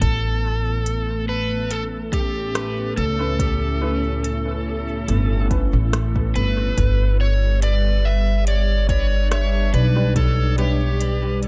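Over a lightly swung groove of a deep, overdriven electronic kick drum and smooth hi-hat and rim clicks from a produced electronic kit trailing dub echo, this peaceful, hazy ambient dub piece sets a thumpy, woody pizzicato upright bass up front beneath a detuned sawtooth analog pad with a slow attack and chorus warble, while an overdriven electric slide guitar carries the melody through dub echo and a mellow, worn upright piano with audible action noise adds boxy, echoing stabs in the background from 3.2 seconds, all in an echo-heavy mix.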